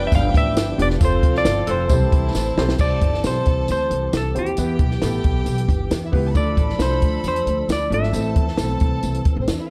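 Dark, warm production with a small-room ambience and light reverb frames this joyful, uptempo 1960s-style soul excerpt, moving at 134 BPM in a straight 4/4 in C major. A clean, picked electric guitar carries the melody up front through an analog delay, while a bowed studio violin section plays a close, intimate second line with light vibrato and a sul tasto softness. A clear saxophone section, jazz-styled and set in the background, adds its own second line only until 2.0 seconds, and a dark concert grand piano joins at 0.8 seconds with deep, natural accompaniment. Underneath, a woody pizzicato upright bass sits prominently in the mix, a very quiet, lightly overdriven tonewheel organ holds fat sustained chords with key click, percussion and a slow rotary speaker, and a jingly tambourine sparkles faintly behind. The dry cocktail drum kit, with its high-tuned snare, tight kick and dark cymbals, plays a fill at 2.3 seconds that leads from a G7–Fmaj7–C6 opening into a C–Em–Dm–Am passage.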